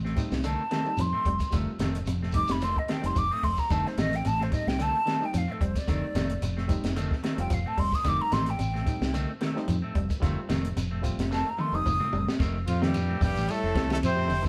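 Hypnotic and funky, this afrobeat groove at 110 BPM sits on an F7 chord in F mixolydian with a light sixteenth-note swing. A breathy, hollow jazz flute carries the melody up front over a round fingered bass, a compact cocktail kit with a high-tuned snare and punchy kick, and a grainy, distant shekere. Around them are bright clean arpeggios from a semi-hollow guitar, twangy stabs from a slightly broken-up guitar with spring reverb, and a barky, overdriven reed electric piano. After a drum fill at 11.3 seconds, a clear trumpet takes over the melody at 12.7 seconds, backed by a raspy tenor saxophone and a present bass trombone, all in a moderately reverberant room with the band playing live.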